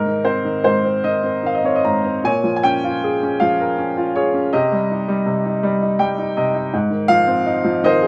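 Classical solo piano in a rubato 6/8, dark and wistful in mood, taken from a longer piece. A single upright piano with a brilliant, woody tone and long sustain sits up front in a moderate studio reverb, ranging from Ab2 to Bb5 as the harmony moves from Ab through Bbm7 and Cm to Ab6. A short fill arrives from 5.6 to 6.7 seconds within the 8.1-second passage.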